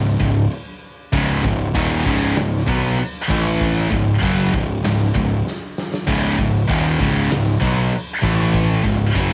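A dry home recording on cassette, this dark, relentless heavy metal excerpt pushes along at 97 BPM in C# minor, its riffs moving between C#5 and A5 chords. Two picked electric guitars sit up front, one bright, high-gain and distorted, the other sludgy and warmly overdriven, both with a tape-worn edge, over a growly, fuzzed and overdriven electric bass. A big acoustic rock kit with a punchy kick, medium-tuned snare and bright crash cymbals enters at 0.2 seconds in a stone-room ambience, breaking into a fill from 5.5 to 6.1 seconds.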